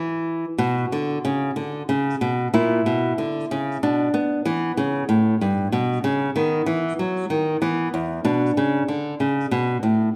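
A small, up-front nylon-string guitar, fingerpicked with an audible finger squeak, rings through a moderate recital-hall reverb in this radiant, serene baroque-style dance in triple metre, played solo with a rubato feel as a brief cut from a longer classical piece.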